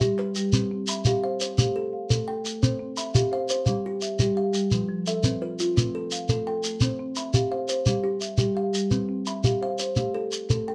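A straight, rolling 12/8 pulse carries this hypnotic, mbira-style interlocking cycle in the southern African traditional vein, cut from a longer piece. Kalimba and soft-mallet marimba play arpeggios together from 0.0 to 10.7 s, the kalimba's thumb-plucked notes short, airy and up front with a woody, solid-board tone. The marimba's padauk bars sound round and mellow, sitting forward in the mids beneath it. A close, dry shekere adds grainy acoustic percussion and sits louder than the two melodic parts throughout. The harmony cycles through C, Am, Cadd11/G and F, giving the loop a warm, gently circling quality inside a moderate studio reverb.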